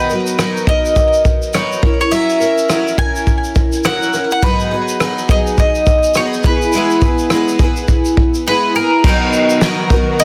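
Swung sixteenths in 4/4 carry this heartfelt, easy-going acoustic pop excerpt, where a punchy, gritty indie drum kit with dark cymbals and a saturated snare sits up front beside a bright, shimmering, double-tracked twelve-string guitar, a round mandolin sings the melody through a touch of delay over Bmaj7, F#7, G#m7 and E, and a lush, woody bowed string section enters in the background at 9.0 seconds as the harmony returns to Bmaj7, all set in light small-room ambience with a dense, heavily limited modern master.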